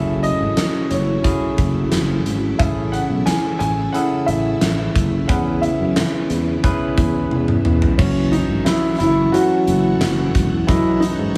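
A dark, mellow baby grand piano carries the melody over barky tine electric piano, a lush string machine with ensemble chorus sitting in the background, and a growly, punchy fretless bass, with a huge arena drum kit of fat snare, punchy kick and bright cymbals joining up front at 0.2 seconds. This nostalgic, romantic 1980s-style pop piece moves at 89 BPM in a straight 4/4 over F#m7, Amaj7 and E6 chords, with a drum fill from 7.3 to 8.0 seconds leading back to F#m7. Light reverb and small room ambience surround the parts in this cut from a longer piece.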